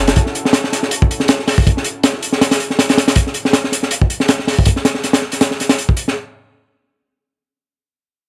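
Dark and frenetic, this short cut from a longer drum and bass track rides a jungle groove at 160 BPM in 4/4, with a light swing on the sixteenths and a home in F# minor. A lush, thick pad of detuned sawtooth voices in unison opens the piece on a sustained F#m7 chord, fading in slowly with a chorus shimmer and a long release, sitting very quiet beneath everything until it stops at 3.1 seconds. The crunchy breakbeat kit enters at 0.1 seconds and carries on to the end, its hi-hat, punchy kick and high-tuned snare placed up front in the mix. The drums sound acoustic yet saturated and gritty, with a rolled-off top that keeps them smooth and shadowy rather than bright. A small room ambience wraps the kit, giving the break a close presence.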